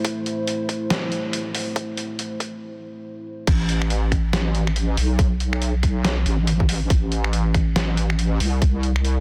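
Deep dubstep in A minor at 140 BPM, moving in a half-time feel with a 59% swing on the 16ths, brooding and meditative in mood, cut from a longer piece. It opens on a build-up, where a deep, moody analog pad holds a sustained A minor chord with a slow attack and long release, its detuned, wave-folded tone thickened by chorus and a sub octave. Beneath it sit a tight, layered electronic kick, filtered and up front, and a gritty, pitched-down sampler-style kit of snare, hi-hat, finger snaps and crash cymbal. A break arrives at 2.6 seconds, and at 3.5 seconds the drop hits as the pad stops and a heavy wobble bass takes over the low end, its square and sine layers detuned in unison with a fast attack and chorus. Light reverb and a digital ambience surround the parts, and the dense, heavily limited master keeps the sound forceful to the end.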